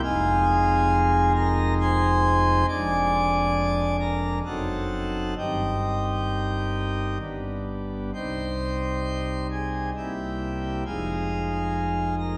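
A solemn classical chorale for solo pipe organ in C minor, moving at a rubato 67 BPM in 3/4 across this 12.4-second excerpt. The principal chorus sounds full and up front with a romantic voicing, spanning deep pedal tones to high treble, while a wet concert-hall reverb with a 2.1-second decay gives it a dark, cavernous sheen. The harmony passes through Fm7, diminished chords and Cm/G to a G chord, settles on Cm at 8.1 seconds, then turns through C7 back to Fm7.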